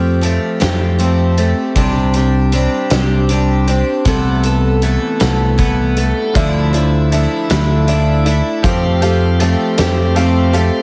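Folk rock with a heartland rock feel, this clip from a longer piece has an open-road, nostalgic mood in 6/8. A shimmering, octave-doubled picked twelve-string acoustic guitar sits up front with plate reverb, alongside a twangy, slightly broken-up electric guitar riff through a small old amp with a lo-fi edge. A punchy, amped fingered electric bass holds the low end up front, and a loose indie drum kit enters at 0.2 seconds, distant and roomy, with a fat snare, a tight kick and hi-hat. From 6.1 seconds a piping, scooped tonewheel organ adds sustained chords in the background through a slow rotary speaker, and at 6.3 seconds a woody, brilliant upright piano joins, also in the background with plate reverb. The harmony moves from Fadd9 through Csus2, Amadd9/C and Dmadd9 before returning to Fadd9, and the mix carries light reverb and a heavily compressed radio sound.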